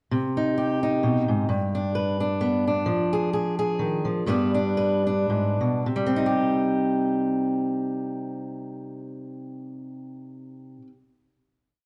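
Wistful and reflective, this brief solo folk piece in a lilting 3/4 features a fingerpicked steel-string acoustic guitar playing rolling arpeggios up front in a dark, warm production with a large studio reverb, moving through a minor progression that slows from 2.9 seconds before settling on a final chord at 5.8 seconds.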